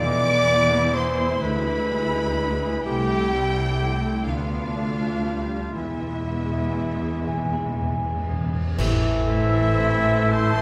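Classical slow romantic movement for symphony orchestra in A minor, melancholic and elegiac, moving at a rubato 38-43 BPM in 6/8, where a soft-attacked violin section carries the melody over a rich studio violin line, a present solo clarinet, lush violas, a ringing harp's arpeggios, dark double basses and cellos, with close, dry timpani sounding at the start and returning for a fill near 5.7 seconds, and a dark cymbal swell, clash cymbals and bass drum arriving near 5.8 seconds, before an airy distant flute, mellow bassoon, very quiet trombones and roomy horns join the band accent at 8.8 seconds and a clear vintage oboe follows at 9.3 seconds, all bathed in a scoring stage's reverb in this fragment cut from a longer piece.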